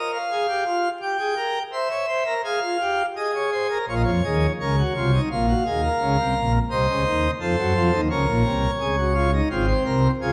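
Soaked in a concert hall's wet reverb and flecked with vinyl crackle, this short cut from a longer classical piece is a serious, contemplative baroque-style three-part fugue in Bb minor at 85 BPM, played up front by a solo pipe organ whose full, brilliant plenum of mixtures, with its romantic voicing, spans Ab1 to G5 and moves from F minor harmony into Bb minor at 3.9 seconds.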